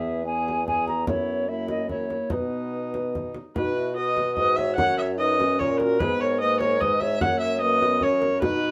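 This classical Renaissance-style consort dance moves at 148 BPM in a stately, courtly 3/4, set in B major with A4 = 439 Hz. An alto recorder carries the melody with a pure, hollow wooden tone, its tongued notes showing a touch of chiff and gentle vibrato. A single bowed viola plays the second line with a rich, reedy gut-string sound in period style, sitting up front as the most prominent voice. A dark, close-miked trombone supplies accompaniment while a bassoon with light vibrato holds the bass, and a deep frame drum, close and dry, enters at 0.5 seconds. Light reverb surrounds the ensemble as the harmony travels from E through F#7sus4 and F#7 to B, then moves among F#, G#m and F# while the opening phrase is restated in this short cut from a longer piece.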